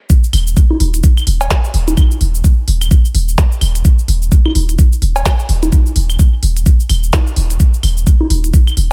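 Minimal techno with a sparse, hypnotic mood and a swung 4/4 groove, cut from a longer piece and sitting in a drop throughout, built on an up-front, layered electronic kick with a knocking tone from a small room, a quieter minimal click kit of tiny snare, clicky hats and cabasa, a deep, punchy sine sub bass with a pitch-drop attack and sidechain pumping, and soft analog claves, congas and cowbell carrying studio reverb and dub echo from a large room, all in a mostly dry mix.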